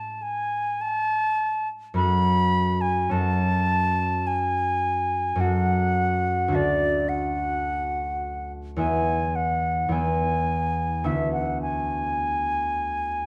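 Flute and harp begin together in this tender, lyrical romantic classical duo, cut from a longer piece and tuned to A4 = 435 Hz. The concert flute carries the melody in its upper register, between D5 and B5, with a pure, straight tone and tongued notes that sit up front. Beneath it, the concert harp supplies fingerpicked accompaniment that spans from the deep D2 up to E5, its acoustic, ringing strings also close and present. The slow 4/4 pulse flows with a gentle rubato as the harmony moves from A to F#m, then to D and E, and settles on E7/D at 11.1 seconds. Close, detailed microphones capture both instruments inside a moderate recital hall reverb, giving the 13.3-second passage an intimate yet airy sound.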